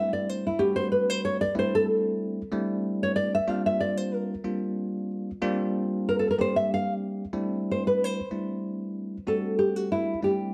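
Set in 6/8 at 62 dotted-quarter beats per minute with a straight feel, this short cut from a longer jazz piece has a soaring, slick mood. A thumb-plucked, classical-toned nylon-string guitar carries the melody up front, its acoustic, warm voice ranging from E4 to F5. It takes a solo through the opening stretch to 7.4 seconds, where the music moves into a new section. Alongside it, a bell-like tine electric piano holds the accompaniment between G3 and G4, sitting clean, bright, direct and up front in the mix. The harmony floats on suspended chords, shifting from D9sus4 to C9sus4 at 3.5 seconds and returning to D9sus4 for the new section. A moderate studio reverb gives the pair a polished sense of space.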